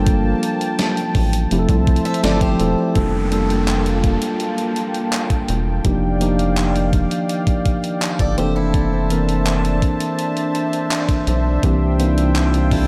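A dreamy, reverb-soaked mix with a moderate plate sheen frames this romantic contemporary R&B excerpt, where a mellow tine electric piano and a rubbery, hollow square bass sit up front over a smooth, detuned analog pad with chorus. An up-front, clean 12-bit drum machine with a thumpy kick, medium-tuned snare, handclaps and hi-hat brings a tape-warm, sampler-style feel, while a downlifter and swell enter in the background at 3.0 seconds. A boxy, picked swing-style acoustic guitar plays arpeggios with delay, briefly at 2.1 seconds and again from 8.2 seconds, as the chords move through lush extended harmonies such as Gm9 and Bbmaj9#11/F.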